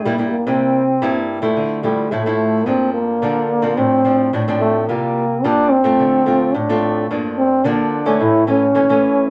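A warm, present trombone with vibrato and scooped notes carries the melody in a jazz style, stepping up front into a solo from 1.6 s to the close of this brief nostalgic, yearning samba fragment in straight 4/4. Beside it, a small, fingerpicked acoustic nylon-string guitar also sits up front, supplying accompaniment through minor-leaning changes that run from C7 through Gm7 and Dm7 before landing on A. A wet studio ambience with a short reverb surrounds both instruments.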